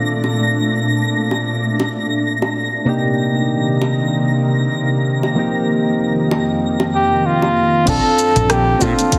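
Sunset chillout with a smooth, warm feel and a swung sixteenth lilt, opening on soft, round electric-piano-like synth keys with chorus and delay, an ethereal detuned pad and a twinkling granular shimmer over tight, high-tuned bongos, before a veiled bucket-muted trumpet takes the melody at 6.9 seconds and a dark fretless bass, overdriven deep house kit and deep electronic kick arrive at 7.9 seconds, all set in a lush hall reverb with a heavily compressed, radio-like sound.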